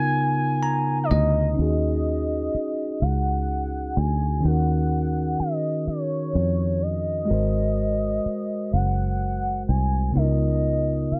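A gliding, detuned portamento lead with chorus and slapback echo sings a yearning, late-night melody over bright, bell-like tine electric piano and a round, foam-muted fingered electric bass in this slow six-eight R&B piece in Eb minor at 42 BPM, cut from a longer work, its dry, close 1970s-style studio sound softened by a low-pass filter, with the piano adding a fill before the harmony moves from Db13 to Ebm11 at 1.6 seconds.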